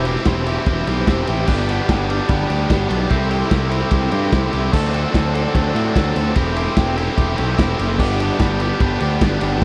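A straight 4/4 pulse at 148 BPM drives this wistful, jangly indie rock clip, cut from a longer piece, with a raw garage drum kit entering at 0.1 s with its punchy kick, medium-tuned snare, crash and ride set back in the mix, gritty and rolled off at the top. Up front, a growly fuzz bass and a biting, double-tracked overdriven guitar riff carry the song, while a soft, flute-like tonewheel organ holds sustained chords in the background through a slow rotary speaker and chorus vibrato. The harmony moves through C6/E, Gmaj7, C6 and D7, captured in a dry, close 1970s-style studio sound.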